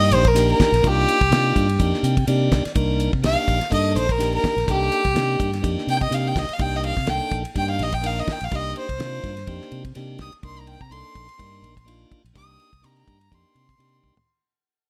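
A clear violin with an airy bow, light vibrato and slapback echo solos up front through this nocturnal, slick electric jazz fusion excerpt at 125 BPM in C dorian, lightly swung over a Cm9 chord, while a piping, lightly overdriven tonewheel organ with key click and a stopped rotary speaker adds a fill at 1.8 s, a round fingered electric bass holds the low end, and a dry, damped 70s drum kit with a fat snare and tight kick plays a fill at 14.0 s, set in a light studio reverb under a fade-out spanning the whole clip.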